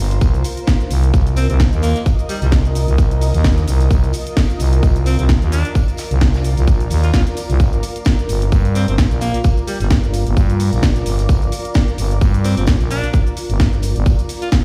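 Played through a big sound system in a bare stone room, this gritty, bouncy bass house excerpt at 130 BPM in G minor rides swung 16ths, with a tight, up-front electronic kick and a thick, growling FM bass pumping under a blurred, detuned granular cloud pad, a house kit with cracking snare and warm hats, a very quiet acoustic indie kit with tambourine, and an edgy alto saxophone solo with vibrato and tape echo entering at 1.4 seconds as the chords move from Cm to Gm at 7.6 seconds.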